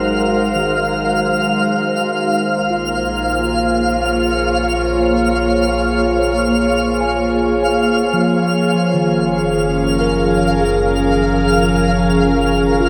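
This serene, luminous ambient passage, cut from a longer piece, opens with a glassy, ethereal FM pad holding sustained chords up front, its slow attack and long release wrapped in ensemble chorus. Beneath it a deep, rumbling drone with a dark, ominous edge fades in across the full 12.9 seconds, while a clean tine electric piano, also fading in, plays delayed arpeggios in the background. Above them a twinkling granular texture adds a sparkling octave-up shimmer high in the register. The harmony drifts in free time from Ab7 to Bbm7 at 2.0 seconds and settles on Gbmaj7 at 8.5 seconds. A lush hall reverb with a 2.6-second decay bathes the whole, giving it a drenched, spacious glow.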